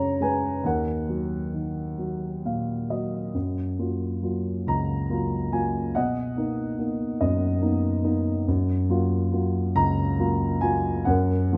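Classical solo piano in a dark, reflective mood, unfolding with rubato at a slow 44-48 BPM in 6/8, this excerpt is cut from a longer piece. A lone grand piano with a mellow, somewhat boxy tone sits up front in moderate concert hall reverb, ranging from C#2 to Bb5 as it moves from Eb minor through Gbsus2 and Ebm colors, adding a fill at 2.0 s. At 3.4 s the harmony turns to F# major, drifting between F#maj7 and Bmaj7 chords through to the close at 11.6 s.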